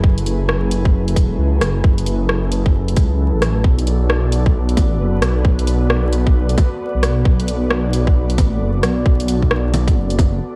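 Nocturnal and melancholic, this future garage excerpt moves at 133 BPM with a swung 4/4 feel and a dark production dusted with vinyl crackle. A tight, up-front electronic kick and a garage kit of bongos, hi-hat and rim click sit under a menacing, detuned saw bass with tube saturation, while a soft, breathy pad with chorus and sidechain pumping holds sustained chords moving from F#m11 to Bm7. From 4.6 s, a grainy, flickering granular texture drifts in the background.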